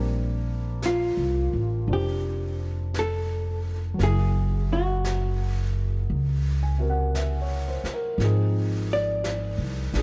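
A slow swung 57 BPM pulse in 4/4 carries this intimate, romantic jazz ballad fragment, with a woody pizzicato upright bass up front beneath a present, long-sustaining grand piano, a vintage brush kit with a high-tuned snare and rolled-off top entering at 0.8 seconds from a small, natural room, and a dark, clean, compressed hollow-body electric guitar picking the melody up front from 0.9 seconds, in a dry, warm production.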